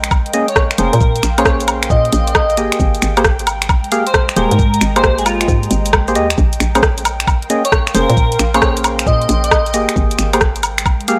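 A hollow, punchy FM bass bounces through this skippy two-step UK garage excerpt, under an up-front, tape-warm garage kit of finger snaps, hi-hat, rim click, shaker and woodblock, joined by a knocking electronic kick, with the groove swung on the sixteenths. Dark, chorused organ stabs with delay and a bright, dreamy lead with vibrato, chorus and delay ride over chords moving between Bbm9 and Abmaj9. In the background, two pads pump with sidechain: one breathy and nasal with chorus, the other ethereal and mellow with ensemble chorus, phaser and its own reverb.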